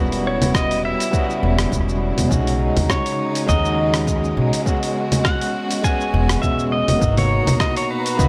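A clean, fingerpicked pedal steel guitar carries the melody from 0.3 s with slide and volume swells, its tone sent into analog delay above a barky, overdriven tine electric piano that sits up front with medium tremolo and dub echo. This blissful, smooth sunset chillout excerpt moves at 102 BPM with a 16th-note swing, passing through Em6, B69, E69 and G#m9 as a lush bowed string section holds rich, vibrato-laden chords and a woody pizzicato upright bass anchors the low end. A gritty, tape-toned sampler-style kit of congas, hi-hat, rim click and shaker joins at 0.1 s, and a punchy layered electronic kick enters at 0.5 s, all within an echo-heavy mix wrapped in spring reverb and digital ambience.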